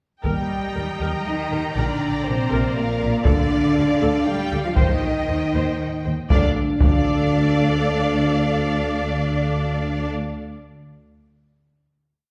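Epic orchestral film score in 3/4 at 119 BPM in D phrygian, relentless and grand, where two lush violin sections carry the melody and sustained chords over a rich viola ostinato, a dark French horn section holds chords, cellos double the tune, double basses drive a bass ostinato doubled by a mellow background tuba, and up-front taiko drums strike single big hard-stick blows until 7.3 seconds, all set back in a wet scoring-stage reverb before settling on a final D minor chord at 6.3 seconds.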